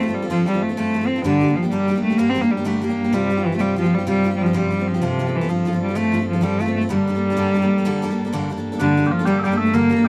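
A dry, close 1970s-style studio sound with light reverb frames this dark, spirited Celtic slide in G minor, moving in 12/8 at 127 BPM with a straight feel. An up-front bowed cello carries the melody with a biting, intense tone and light vibrato over a bright, full-bodied picked steel-string guitar whose fresh strings show finger squeak, while a lush studio string section holds a drone on G2. At 8.8 seconds, mellow small bagpipes enter with a sweet, continuous second line until the cut at 10.1 seconds.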